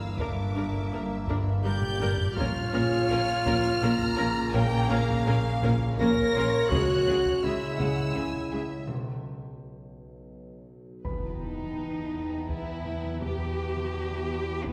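Eerie, uneasy suspense film score in triple metre. It opens with a lush, expressive violin section singing the melody over a second violin line, a solo clarinet, dark soft-edged French horns, clear trombones in the background, a ringing thumb-plucked harp riff, a resonant drone with moving overtones, and a very quiet grand piano with deep bass, joined almost at once by focused violas, smooth cellos, double basses and heavy-stick taiko drums. Horns, trombones and clarinet drop out for a break at 8.9 s where up-front timpani strike, and then at 11.0 s a distant violin texture and a huge, bright impact arrive in the spacious scoring-stage reverb.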